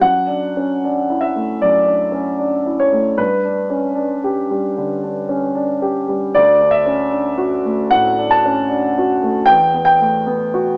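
Hopeful and intimate, this short excerpt of neoclassical minimalist piano moves at a rubato 76 BPM in 4/4, in D major, with a solo grand piano spanning D2 to A5 and moving through Dadd9/F#, G, Dadd9 and Emadd9. The piano sounds warm, natural and up front, captured live in one room with light reverb and a small-speaker character.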